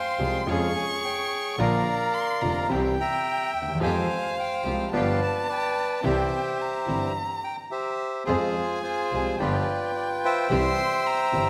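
A reedy, up-front bandoneon carries the melody in this passionate, tense tango fragment at 108 BPM in 4/4 with a rubato feel, while a single bowed violin sings a close, expressive second line above it with vibrato, portamento and a soft attack. A clear, polished concert grand piano with audible action noise and deep bass provides the accompaniment, a lone bowed double bass adds an earthy, biting low end with light vibrato, and a very quiet, lush studio string section contributes focused stabs. A wet concert hall reverb surrounds the ensemble as the harmony turns through Db/F, Bb, Fmadd9 and G7 before settling on C.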